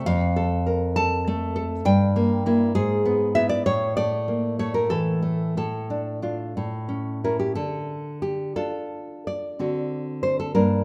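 Set in 6/8 with rubato and a slow pulse of 56-68 BPM in dotted quarters, this romantic piece for solo classical guitar unfolds in D minor with a melancholic, intimate mood. The nylon-string guitar plays alone throughout its 10.8 seconds, fingerpicked and placed up front, with a dark acoustic tone and the occasional finger squeak giving a close, human touch. Its range spans F2 to A5, and the harmony moves from Fadd11 through Edim/G and E/G# toward A5, settling on Dm/A and A before the second section begins at 7.6 seconds on Dm and turns to D7. A moderate recital hall reverb surrounds the instrument with a gentle sense of space. The recording is cut from a longer piece, so it reads as a brief glimpse of a larger, introspective work.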